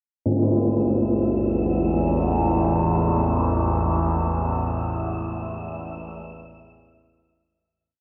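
Free-time and desolate, this short dark ambient drone piece opens with a single bright, close and dry tam-tam stroke at 0.3 s, softened by a low-pass filter, before a resonant, up-front sawtooth-and-sine drone with moving overtones and chorus rises at 0.9 s in the low register, joined at 1.2 s by an airy, breathy wind-like noise layer holding one high tuned note under shimmer reverb, all set in a cavernous cathedral reverb with a cassette-tape grain.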